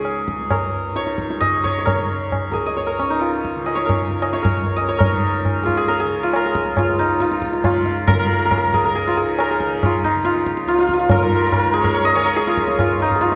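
Bathed in a recital hall's lingering reverb, this radiant, devotional Hindustani classical passage in raga bhupali on Db moves in an uneven 7/4 at 136 BPM and gathers speed throughout, with a bright, ringing, hammered santur carrying the melody up front, a warm, buzzing, softly plucked tanpura drone beneath it, and a high-tuned, close and dry tabla with a short ring, the music moving into a new section at 5.0 seconds.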